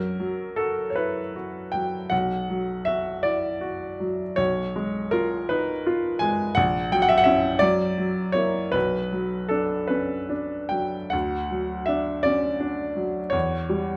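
Close, detailed microphones catch a bright, woody upright piano with short sustain, placed up front in a moderate recital-hall reverb. This is a wistful, yearning romantic nocturne in B minor for solo piano, moving in a rubato 12/8 at roughly 47-58 BPM in dotted quarters, its range spanning from A#1 up to G#5. Cut from a longer piece, the 14-second passage drifts from F# through Bm, C#7/B and F#7 back to Bm, then turns to D before arriving at C#dim/E at 13.3 seconds.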